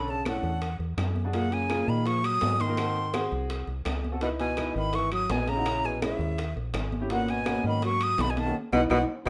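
A breathy, bright silver flute carries the melody up front over a dark, subtoned tenor saxophone second line, an intimate grand piano with audible action noise, and a round, foam-muted fingered electric bass in this fiery, driving Afro-Cuban jazz excerpt, as ringing congas, tight bongos and woody claves sit in the background alongside distant metal-shell timbales before a drum fill and band accent at 8.5 seconds.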